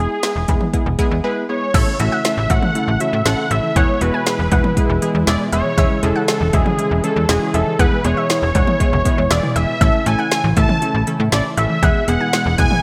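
Synth-pop at 119 BPM in A major, upbeat and nostalgic, where a thick, wave-folded unison lead carries the melody over a funky sawtooth polysynth comp, a snappy slap-like FM bass with a metallic attack and a deep house drum kit with deep kick, woody snare, cowbell and gated reverb, and after a short break at 1.2 seconds a brassy analog pad, a detuned analog pluck and a very quiet, round pluck playing arpeggios join at 1.7 seconds, all set in a lush hall with bright 1980s-style digital production in this excerpt from a longer piece.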